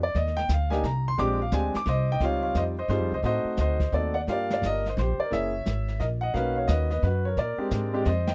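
A dry, close 1970s-style studio sound frames this relaxed, playful jazz piano trio excerpt in a swinging 3/4 at 174 BPM, where an intimate, up-front grand piano with audible action noise and long sustain carries the melody over a woody, thumpy pizzicato upright bass and a dark, brushed drum kit with a boomy kick, moving through rich harmony from Cm9 and Bb13 to Dbmaj9#11, D7b9 and Bmaj7 before the cut at 8.3 seconds.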